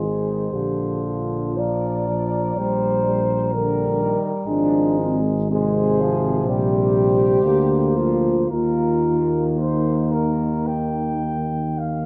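A moderate scoring-stage reverb gives this brief, hymn-like brass band passage a spacious classical setting, unfolding at a rubato 54-65 BPM in Eb major with a lyrical, tender mood. A mellow, soft-attacked flugelhorn carries the melody from a distance, while a dark, close-miked French horn section with light vibrato sings a tight second line until 11.8 s, over clear euphonium and warm trombone accompaniment in the background. An up-front, smooth-topped tuba anchors the bass as the harmony settles onto Eb at 8.5 s.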